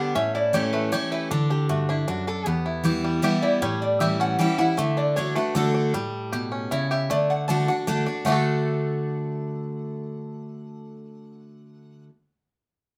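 A nasal, metallic lap resonator guitar carries the melody with a fingerpicked slide sound in this rustic, driving bluegrass fragment in 3/4. A twangy, percussive banjo plays a second melody line with fingerpicks. Beneath them, a full-bodied jumbo steel-string acoustic guitar sits up front with bright picked accompaniment, all set in a moderate studio reverb.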